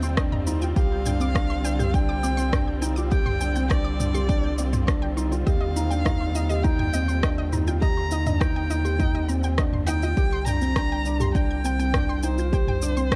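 Dark, intimate production with light reverb and studio ambience frames this melancholic piano-and-strings electronica fragment, where a felt-muted upright piano plays a soft, mellow riff over a round analog bass with sidechain pumping and a deep, layered electronic kick arriving at 0.2 s, while a tape-flavoured electronic kit adds rim click, shaker and toms, a bright detuned analog pluck with chorus, digital delay and sidechain pumping spins arpeggios in the background, a distant, woody string section with sidechain pumping holds lush sustained chords, and a single dark violin carries an expressive melody with vibrato and portamento over harmony moving between Eb6 and Csus2.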